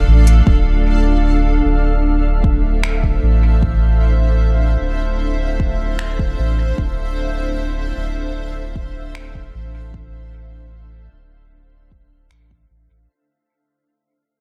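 A digital ambience surrounds this meditative, hazy ambient dub excerpt in D minor at 76 BPM, where a blurred, detuned granular cloud pad holds a Dm9 chord over a round, tube-saturated sub bass sitting up front, a deep layered electronic kick enters at 0.5 seconds, and finger snaps and crisp hi-hat from an organic electronic drum kit drift through dub echo as the recording fades out from 0.5 seconds until it is cut at 13.1 seconds.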